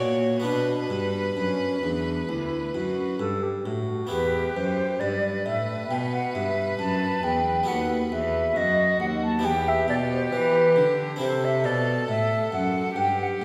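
A slow, straight 4/4 pulse at 67 BPM carries this introspective, solemn baroque-style sonata movement with continuo, cut from a longer piece, which begins in B minor and turns to E minor at 4.1 s. A mellow silver concert flute sits up front with a soft attack and vibrato, carrying its second line alongside a rich, expressive violin melody sung with vibrato and portamento. Beneath them a bright, plucked French-style harpsichord and a clear, intense bowed cello supply the continuo, all heard from further back in a wet recital hall.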